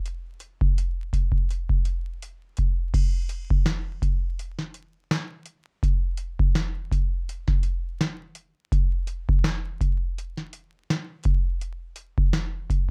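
A booming analog drum machine opens this nostalgic, mellow hip hop excerpt at 83 BPM, its deep kick, crisp snare, metallic hi-hat and crash cymbal sitting up front in a lightly swung 4/4 groove that runs from 0.1 to 12.9 seconds. The production is dark, warm and dry, with vinyl crackle in the background, and the pattern moves into a new section at 2.9 seconds.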